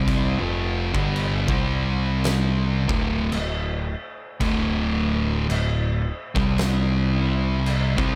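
A thick, double-tracked fuzz guitar sits up front, grinding out a heavy, sludgy stoner and doom metal riff in D minor at a crawling 55 BPM with a swung eighth-note feel, moving from D minor to C5 and D5 chords. Beneath it, a growling, overdriven electric bass adds a round, punchy low end, while an oversized, low-tuned acoustic kit enters at 0.1 seconds with a boomy kick, fat snare, gritty saturation and a pumping room sound. The mix carries little reverb, and this short cut from a longer piece runs 8.2 seconds.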